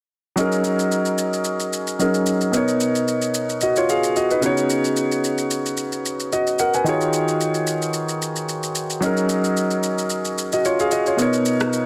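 A warm, polished grand piano with long sustain sits up front, playing chords such as Gb6, Bmaj7, Db9sus4 and Ebm11 over a layered, overdriven electronic shaker and rim click in this hypnotic, late-night amapiano piece at 111 BPM with a light swing, heard through light reverb and small room ambience in a dense, heavily limited modern master, cut from a longer track.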